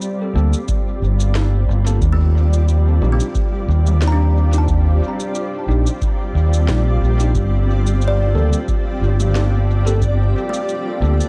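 Deep, hazy ambient dub in which an overdriven fingered electric bass sits up front beneath a blurred, detuned granular cloud pad, while a bright, buzzing kalimba's arpeggios, a clean tine electric piano's phased stabs, and an organic electronic drum kit of shaker, woody snare and toms all ring out through dub echo over a deep analog kick, until a reversed, dreamy granular texture enters at 8.7 seconds in this echo-heavy excerpt.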